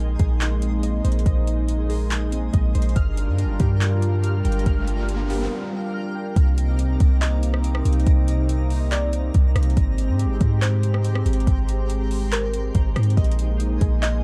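A mellow analog pad with a sub octave, chorus and sidechain pumping opens this hazy, ethereal cloud-rap excerpt, joined at once by warbling, nostalgic lo-fi synth keys playing arpeggios, a deep, boomy 808-style bass and a twinkling granular texture with an octave-up shimmer and built-in reverb. Moments later an electronic R&B drum kit sits up front in a half-time feel, its soft kick, metallic hi-hats, handclaps and rim clicks roughened by overdrive. An electronic riser arrives at 4.2 seconds, leading into a short break before the keys drop out at 6.4 seconds as the chords move to Cm9 and then Abmaj9. From 7.2 seconds a round, nasal, detuned pluck carries a melody in the background through chorus and digital delay, and the keys return briefly as the progression lands back on Bb9sus4. The production is dark and warm, with a digital ambience surrounding the parts.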